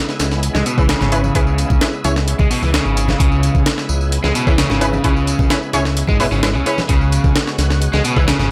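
The sampler-style breakbeat kit sits up front in this funky, energetic breaks excerpt, with a gritty, pitched-up, compressed sound, a thumpy kick, a high-tuned snare and hi-hat. A fat analog bass enters at 0.2 seconds with thick, detuned sawtooth and square-wave tones and a moving notch, holding sustained low notes beneath. At 0.5 seconds an overdriven, picked electric guitar joins up front with a riff, shaped by a low-pass filter sweep and tape echo. Bold, punchy orchestra-hit-like synth stabs cut through with a layered unison sound and a noise layer, carrying built-in reverb and tape echo. In the background, a shouting tonewheel organ holds sustained chords with key click, chorus vibrato, a slow rotary speaker and sidechain pumping. A produced electronic tambourine and very quiet acoustic congas fill out the percussion, and the loud mix has little room sound.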